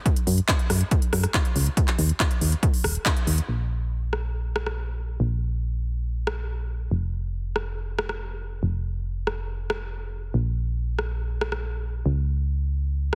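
Bittersweet and emotional, this excerpt of uplifting trance moves at 140 BPM in a straight 4/4, with a punchy, layered electronic kick up front that drops out at 3.1 seconds while a techno kit of smooth hi-hats, handclaps and rim clicks carries on to the end. A round, dark FM bass with a fast attack and decaying notes runs from Eb1 to Gb2, pumping against the sidechain just as the hats do. The sound is dry and heavily compressed, like a radio broadcast, with the music shifting into a new section at 3.5 seconds.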